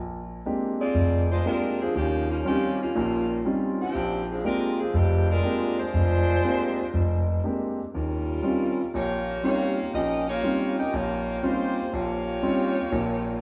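A brassy, energetic jazz excerpt at 120 BPM with a swung 4/4 feel, built on Bb13 and Eb13 chords. A clear concert grand piano with deep bass and audible action noise accompanies from the start, and a mellow saxophone section with vibrato and soft attacks carries the tight melody from 0.8 seconds. Both sit up front yet are heard from further back in a roomy echo chamber with a long, wet tail.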